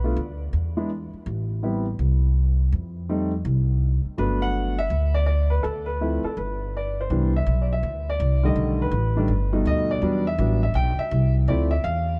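Jazz piano trio in a playful, swinging 4/4 at 164 BPM in G major, tuned to A4 = 436 Hz, this 12.2-second clip from a longer piece sets an open, long-sustaining baby grand piano carrying the melody against a woody, growly pizzicato upright bass on steel strings, both up front throughout in a dry, dark, warm production, as the harmony moves from Bm7b5 through Gmaj9 and Cmaj7 to B7alt, Em9 and Dm9.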